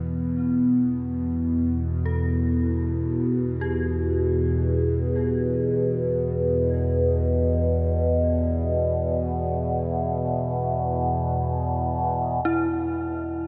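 An up-front drone dominates this short cut from a longer dark ambient piece, a resonant blend of sawtooth and sine with moving overtones, slow attack and long release, sitting low between E2 and B2 with chorus and its own reverb. Above it, a detuned FM synth bell plays eerie, inharmonic arpeggios from E4 to A4, its full-bodied, fast-attack tones decaying into chorus, tremolo, diffuse ambient delay and shimmer reverb as it fades in over the first 12.5 seconds. A bronze singing bowl struck with a felt mallet rings very quietly on B4, its mellow, metallic tone showing slow beating and a close, dry presence until 12.5 seconds. The mood is unsettling and dark in free time, resting on E minor before shifting to an open E5 sound for the final second. A dark production and a cathedral reverb with a 6.1 second decay wrap the drone and bell in a deep, cavernous space.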